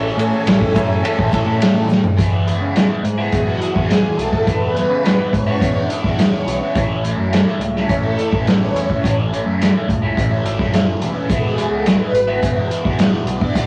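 Psychedelic rock excerpt at 105 BPM in E major, trippy and hypnotic, where a lush string machine with ensemble chorus sustains chords and takes a solo from 2.2 seconds over a bright, double-tracked overdriven guitar riff with phaser, a dark, round overdriven bass, a muffled, punchy vintage drum kit up front that plays a fill at 1.9 seconds, and a very quiet, grainy egg shaker, all captured as a rough cassette rehearsal-room recording in a moderate stone room.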